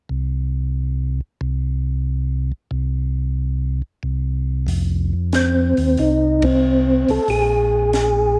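A lightly overdriven, percussive tonewheel organ carries the melody from 5.3 seconds with fast rotary speaker, vibrato and slapback echo, over a round, dark organ bass line on slow rotary that plays alone from the opening and a dry cocktail drum kit with a punchy kick and high-tuned snare entering at 4.7 seconds, all in a swinging, bluesy soul jazz organ trio fragment with a band accent at 6.3 seconds and light small-room reverb.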